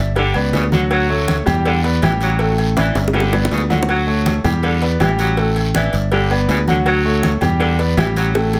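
A round, punchy electric bass sits up front in this sunny, danceable salsa excerpt in D major at 161 BPM, driving a cycling G, Dmaj7, Em7, A7sus4 progression beneath a brilliant concert grand piano, an edgy saxophone section with vintage vibrato, low-tuned congas, tight high-tuned cowbell and bongos, ringing agogo bells and timbales in the background, and a raspy guiro, with a drum fill from 2.8 to 3.9 seconds and a moderate studio reverb.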